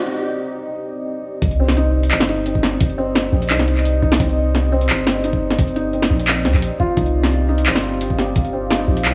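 A dark, detuned sawtooth pad with chorus, reverb, 12-bit sampler grit and sidechain pumping opens this heavy, spacious half-time drum and bass excerpt in C minor at 173 BPM, alongside a soft, felt-muted upright piano arpeggiating through digital delay and an electronic riser building toward a drop at 1.4 seconds. There a long sine 808 bass, an overdriven knocking kick and an up-front layered kit of cracking snare, metallic hi-hats and handclaps arrive in a small room ambience, while the riser and sub drop end at 2.8 seconds.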